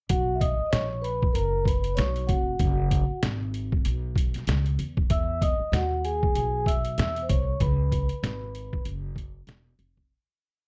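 A dry, close 1970s-style studio sound frames this smooth, warm jazz-hop piece in B major at 96 BPM, with a swung sixteenth-note feel. A gritty, compressed, pitched-down sampler-style drum kit, re-recorded in a large room, drives a boom-bap beat with a thumpy kick and backbeat snare, while a woody, dark upright bass on gut strings walks underneath with muted ghost notes and chromatic approach notes. Up front, a mellow, ringing vibraphone with soft mallets and slow motor vibrato comps freely in rootless voicings with grace notes, through chords moving from Bmaj7 to Emaj7, before stopping at 8.8 seconds as the piece fades out by 10.1 seconds.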